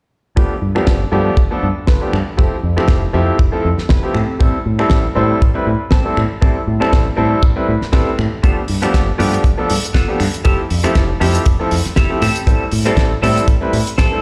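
Nu-disco at 119 BPM in A minor with a sensual, sleek swing, where an intimate, up-front baby grand piano with audible action noise and long sustain pumps through G9, Fmaj9 and Am7 chords over a bright, envelope-filtered fingered bass and a tight, dry kick, while a picked, compressed clean electric guitar riff with lush chorus and a filter sweep sits in the background and a damped 70s kit with a fat snare, hi-hat and finger snaps enters at 0.8 seconds, all heard through stone-room reverb as if played on a big sound system in a bare room.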